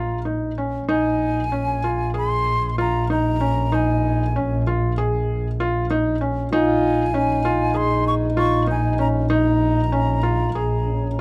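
Pensive and restless, this fragment of contemporary chamber music moves in an uneven 9/8. A felt-muted upright piano plays soft, intimate arpeggios with audible action noise, beneath an airy wooden flute melody with crisp attack and vibrato, while a bowed double bass plays a single low note with expressive portamento. At 6.5 seconds a mellow, roomy French horn enters with a second line, and close, detailed microphones and light reverb frame the ensemble.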